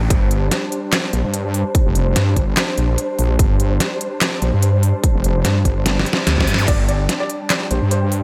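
A half-time groove with a light sixteenth-note swing drives this heavy, aggressive wobble dubstep fragment, built on a punchy, layered electronic kick and an up-front kit of deep snare, crisp hi-hats, handclaps and crash cymbal, both with a tape-tinged small-room ambience. Underneath, a saturated, detuned wobble bass mixing sawtooth and sine tones sits forward in the mix with a fast attack, overdrive and chorus. A dark, lush studio string section holds bowed, woody chords with vibrato behind everything, pulsing under sidechain pumping and a low-pass filter. A drum fill begins at 5.9 seconds, and a reverse cymbal and zap sound faintly in the background from 6.1 seconds. At 6.7 seconds a dark, intimate baby grand piano takes a brief high melody, its short sustain and audible action noise echoed by a digital delay, all under a light reverb.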